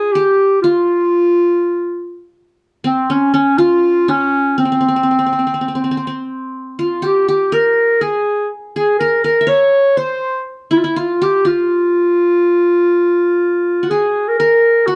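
This Arabic maqam ensemble piece carries a longing, melancholic mood in a straight four-beat metre. A mellow clarinet leads the melody from start to finish in a classical-style solo voice that sits up front yet still sounds distant and roomy, with a punchy attack to its phrases. Beneath it, an acoustic qanun played with fingerpicks carries a second line, its triple strings giving a bright-edged, warm shimmer at a lower level in the mix. Both instruments play together throughout the 15 seconds. The dark production and moderate studio reverb lend the fragment, taken from a longer piece, a shadowed, intimate atmosphere.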